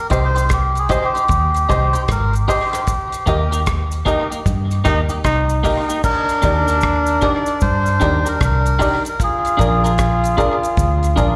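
Roots reggae at 76 BPM with a swung, laid-back and serious mood, this excerpt from a live gig heard through the venue's PA carries a recital-hall ambience as a reedy, breathy melodica leads up front through tape echo, plate reverb and slapback echo, stopping at 10.4 seconds. Beneath it a foam-muted, round, punchy electric bass sits forward with a damped 70s drum kit of dark cymbals and tight kick, while a twangy, scooped clean electric guitar provides accompaniment and a woody, slightly detuned upright piano adds stabs, a cabasa shakes quietly in the background, and a band accent lands from 2.9 to 6.0 seconds. At 4.1 seconds a brilliant trombone with light vibrato enters on a second line, moving over chords from Cm and Eb to Ebmaj7 and Bb7.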